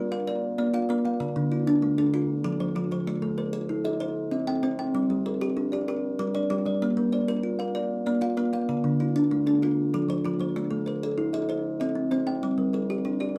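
A short, boxy kalimba plucked with the thumbnail sits up front with a slapback echo, its arpeggios spinning a hypnotic, rippling, mbira-style interlocking cycle in a southern African traditional vein at 128 BPM in 12/8 with a straight feel. A second kalimba, thumb-plucked, ringing, dark and smooth, plays its own arpeggios from 0.0 to 13.4 s. Both kalimbas have a woody, solid-board tone in G equiheptatonic tuning, moving over a Bb, Dm, F, Am, C and Gm progression. Moderate small-room ambience frames this passage, which is cut from a longer piece.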